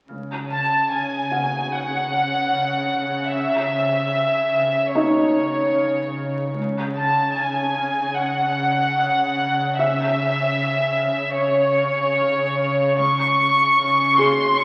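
An intimate violin section carries the melody up front, bowed sul tasto with light vibrato and a soft attack, in this mysterious, ominous suspense film cue cut from a longer piece. Beneath it a dark, woody cello section holds the bass, a ringing fingerpicked concert harp repeats a riff, and a felt-muted upright piano adds mellow texture from 1.3 s, while a double bass section surfaces in brief background touches. A wet scoring-stage reverb and the crackle of a very old 78 rpm record give the whole a haunted, aged sound.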